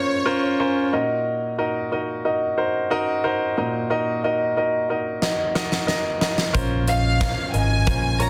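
Bittersweet and earnest, this short excerpt of piano-driven pop moves at 91 BPM in a straight 4/4, built around a polished, present baby grand that carries the accompaniment throughout and opens with a fill. A lush studio violin section sings the melody with smooth vibrato, heard briefly at the start and returning from 6.9 seconds with a close, bowed ensemble tone. The huge arena drum kit arrives at 5.2 seconds with a fill, bringing a fat snare, punchy kick, hi-hat and handclaps in a big acoustic room sound. A dark, round fingered electric bass joins just after, adding amped low-end weight. The chords shift from Bbmadd9 to Ebm and back, all set in moderate large studio reverb under a dense, heavily limited modern master.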